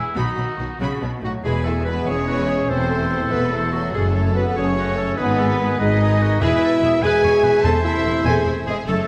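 A full orchestra rings out in a wet scoring-stage reverb in this triumphant, adventurous excerpt from a heroic film score, moving at 96 BPM in a straight 6/8 in E major. Lush, vibrato-rich violins carry the melody over a warm French horn section holding sustained chords, while a clear, vintage-toned oboe, a bright clarinet entering at 1.2 s and a second violin line weave supporting parts, with violas adding expressive portamento accompaniment. Cellos and woody, dark double basses anchor the bass, a distant, roomy trombone section joins the chords at 1.4 s, and hard-mallet timpani strike crisply at 7.6 s as the harmony shifts to Am over E.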